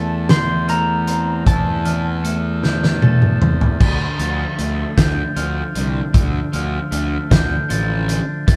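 A loose, up-front indie drum kit with a punchy kick, fat snare and dark cymbals drives this hopeful, cinematic post-rock fragment at 51 BPM in a straight 6/8, entering at 0.3 seconds and rolling through a fill from 2.6 seconds into the move from Am/E to Dm. Beneath it sits a round, fuzz-overdriven picked bass, while a clean, compressed twelve-string electric guitar arpeggiates in the background through spring reverb and a soft, airy glockenspiel played with rubber mallets rings out bell-like arpeggios up high. A slightly broken-up electric slide guitar carries the melody until 3.4 seconds, all captured as a band playing live in one room with a wet studio reverb.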